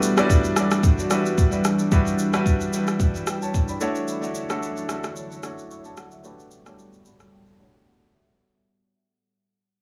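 Swung sixteenths at 111 BPM drive this late-night, soulful amapiano fragment in E dorian, where an electronic R&B kit of soft kick, rim click and shaker sits up front beside a clear, polished baby grand piano comping through Em9, Dmaj9 and Gmaj9 with tape echo, while a glassy, ethereal FM pad with a sub octave and ensemble chorus holds slow-attack chords beneath, all within an echo-heavy small-room mix that fades out under a filter sweep as the piano plays a fill from 6.8 seconds and the drums drop away at 7.3 seconds for a closing break.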